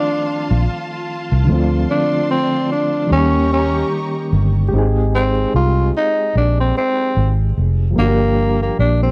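A growling tenor saxophone carries the melody up front in this short, nostalgic lo-fi hip hop excerpt, its breathy, raspy subtone shaped by vibrato and scooped notes under a low-pass filter. Soft electric-piano-like synth keys, round and gently decaying, accompany throughout with chorus and tremolo. A lush, bowed string section holds sustained chords with plate reverb until 4.7 seconds, while a foam-muted fingered electric bass enters at 0.5 seconds, punchy and saturated. The tempo sits at 74 BPM in 4/4 with a swung sixteenth-note feel, moving through F7, Dm7 and Eb7 before reaching Abmaj7 and later Gm7. The recording has a dry, gritty hardware character with light reverb and vinyl crackle, giving it a hazy mood.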